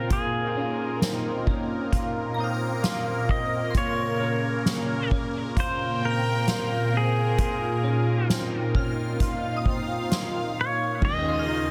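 A swirling, detuned analog pad with phaser and chorus opens this hazy, melancholic dream pop excerpt at 66 BPM in Bb dorian, alongside a twangy pedal steel melody with volume swells and tape echo and a slightly broken-up, lo-fi guitar picking arpeggios through chorus and echo, while a boomy soft-mallet drum kit with dark cymbals sits up front, a shimmering FM bell adds a bright halo from 2.3 seconds, and a dark, clean guitar with tremolo slips in quietly in the background at 11.0 seconds over the shift from Dbmaj7/Bb and Bbmadd9 to Eb9sus4, all in a small room under a dense, heavily limited master.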